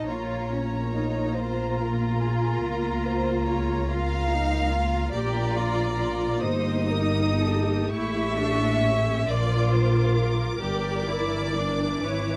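Classical string orchestra in a slow, solemn and elegiac romantic movement in 6/8 and Bb minor, moving with rubato at 39-49 BPM, where a high, intimate violin melody with soft attack and light vibrato floats above a sul tasto second violin line, a rich, smooth viola accompaniment, a close, even cello section with vibrato, and a dark, up-front double bass section that leans in with expressive portamento, all bowed under light reverb in a brief fragment of a longer piece.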